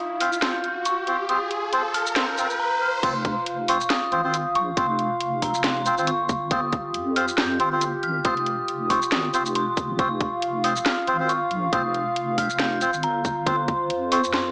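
Deep dubstep at 138 BPM in F minor with a half-time, swung feel, this dark, cavernous excerpt from a longer piece opens with a three-second build-up in which an electronic riser climbs alongside a sustained, detuned analog pad carrying vintage sampler grit. An eerie, inharmonic synth bell enters at 0.2 seconds, its filter sweeping through the build-up, its high melody shimmering with chorus, phaser and dub echo. Reedy, breathy melodica stabs arrive at the same moment, trailing dub echoes of their own, while a garage drum kit with a cracking snare, hi-hat, shaker and crash sits up front, overdriven and layered. The drop lands at 3.0 seconds, bringing in a tight, overdriven electronic kick and a deep, soft wobble bass of rounded sine and triangle tones thickened with chorus. The mix has a moderate digital room reverb and a thin, small-speaker character that gives the cavernous mood a lo-fi edge.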